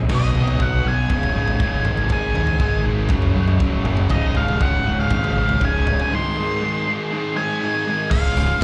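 A growly, up-front fuzz bass opens this cathartic, restless quiet-loud alternative rock excerpt at 120 BPM in Db major, joined at 0.1 seconds by a dark octave-fuzz lead guitar carrying the melody, a bright thick fuzz guitar and a biting overdriven guitar set in the background, both playing riffs with slapback echo, and a big rock drum kit with bright cymbals and a punchy kick, all captured like a live club gig through the venue's PA onto cassette, with a break arriving at 6.1 seconds before the overdriven guitar drops out at 8.1.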